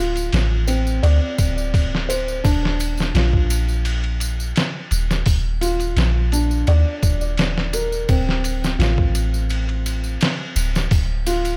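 A deep, round 808-style bass sits up front in this dark, hypnotic trip hop fragment, joined at 0.2 seconds by a gritty, pitched-down sampler-style drum kit with a thumpy kick and faint tambourine and triangle, while a felt-muted upright piano plays mellow, intimate arpeggios through a low-pass filter and tape echo over Dm7 moving to Ebsus2 and back, in a dry mix.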